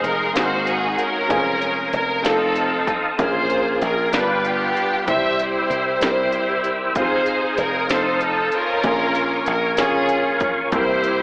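Heard through an AM-radio filter and bathed in a lush hall reverb, this fervent, solemn slow gospel fragment in a straight 6/8 puts a bright, intense string section up front carrying the melody with rich vibrato. A clear concert grand piano with deep low notes provides accompaniment, while a tonewheel organ with key click, chorus vibrato and a slow rotary speaker holds sustained chords in the background. Underneath, a dry, foam-muted thumbed slap bass and an electronic techno kit with a punchy kick, cracking snare and smooth hats play throughout the 11.2 seconds, while the harmony moves through chords such as Ab13, Bbm7, G7 and C7.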